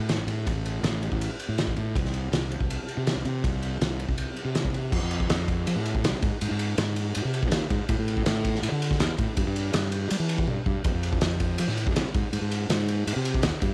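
A straight 4/4 pulse at 162 BPM drives this intricate, wistful math rock and midwest emo excerpt, with a loose indie drum kit of punchy kick, fat snare, dark cymbals, toms and pumping room sound sitting up front alongside a growly, overdriven fuzz bass ranging from A1 to G3. The dry home-cassette recording gives the drums a tape-worn character as the passage moves from its opening section into a new one at 4.9 seconds. A short drum fill at 10.5 seconds punctuates the second half before the cut.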